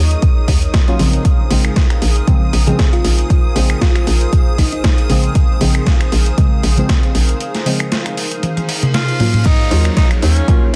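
A hollow, knocking FM bass sits up front with a punchy electronic kick in this moody deep house excerpt at 117 BPM with a light swing, moving between Ebm9 and Bbm9. Around them play a gritty, overdriven sampler-style kit of snare, hi-hat, finger snaps, toms and crash, soft warbling chord stabs with dub echo, a smooth analog pad, shimmering string-machine violins and a blurred granular cloud pad, with everything but the drums pumping to the kick. A round, tine-like synth pluck appears at 2.7 s, a break arrives at 7.4 s with a drum fill, a reverse cymbal and downlifter, and a clear, close-miked tenor saxophone enters just before the drop at 9.5 s, all in a dense, dry and heavily limited mix.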